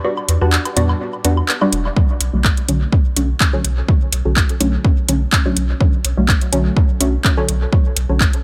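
Set in a swung 4/4 with a lightly shuffled sixteenth feel, this dub techno excerpt opens on a brief break before an overdriven electronic kick lands at 2.0 seconds, deep and up front. From 0.3 seconds, a deep house drum kit of handclaps and metallic hats, also overdriven and sent into dub echo, carries the groove, while a soft, round sub bass pumps beneath under sidechain compression. Muted, detuned sawtooth chord stabs move from Em7 to Bm7, with chorus and phaser giving them a mellow, evolving shimmer as a filter sweeps across them and dub echo trails each hit. During the opening break, a breathy, very quiet wind-like noise texture hovers, and tape-touched electronic woodblock and toms sit in the background, pumping and echoing before dropping away. The room is dry and close, yet the mood stays cavernous and hazy.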